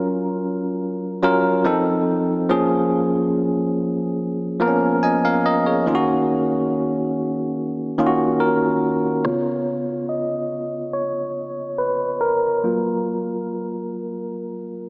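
Longing and moody, this slow 71 BPM R&B fragment features a solo bell-like tine electric piano, clean and up front, drifting through Gbmaj7, F7, Bbm7/F and Ebm7 chords through a low-pass filter, with a filter sweep arriving at 9.3 seconds as the harmony moves to Db7 and back to Gbmaj7, all bathed in lush hall reverb with a small-speaker character.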